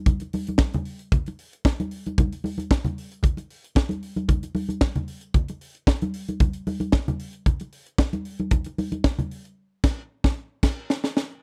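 Disco at 114 BPM in a straight 4/4, this short cut from a longer piece feels glamorous and driving. A tight funk drum kit sits up front with a natural, small-room sound, pairing a high-tuned snare and a tight kick with hi-hat and crash cymbal. Congas join from the start, bright and thin-skinned at a medium tuning, struck with hard hands and placed close and up front, though they sit lower in level than the kit. The congas drop out at 9.3 seconds, and from 9.6 seconds a drum fill and a band accent carry the passage to its close. The dry, close 1970s-style studio sound keeps reverb to a minimum, so every hit comes across crisp and immediate.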